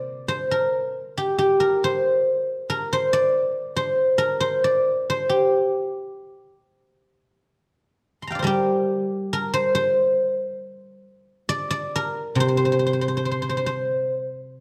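A solo guzheng, mellow and silvery, rings out up front in a contemplative, longing Chinese traditional excerpt, its fingerpicked strings spanning low to high registers in a free rubato 2/4 that moves into a new section at 7.1 seconds, captured with close, detailed microphones in the moderate reverb of a recital hall.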